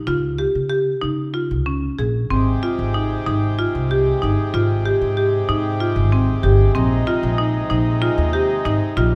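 A marimba played with medium hard mallets spins dark, woody arpeggios over a warm pizzicato upright bass strung with steel strings, both up front, opening this hopeful, playful chamber piece in 7/8 at 189 BPM counted in eighths. At 2.3 s a reedy, nasal hand-pumped harmonium enters with breathing sustained chords alongside them, as the harmony moves from Db to Abmaj7 and then to Bb9sus4 at 6.8 s. Light reverb rounds out this short excerpt from a longer piece.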